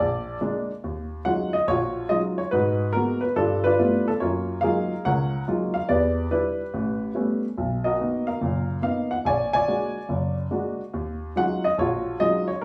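A swung 142 BPM pulse in 4/4 carries this moody, late-night jazz excerpt in Eb minor, played by a solo baby grand piano from 0.0 to 12.6 s across a span from F#1 to Ab5. The piano sounds intimate and natural, sitting up front with short sustain and audible action noise, while a club reverb and studio ambience give the sense of hearing it from further back in the room. The harmony moves from Bb7 into Ebm11 and wanders through rich colours like G13, Gbmaj13, A9 and Bmaj7 before a Bb7alt at 9.2 s pulls it home to Ebm11.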